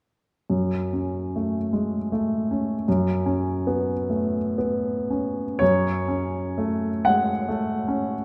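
Melancholic and mournful, this short excerpt from a romantic classical nocturne unfolds in a rubato 6/8 lilt on a solo baby grand piano, natural and up front in tone, spanning F#2 to F#5 from 0.5 to 8.2 seconds and bathed in a wet recital hall reverb as it moves from a minor chord through an added-eleventh colour and back again.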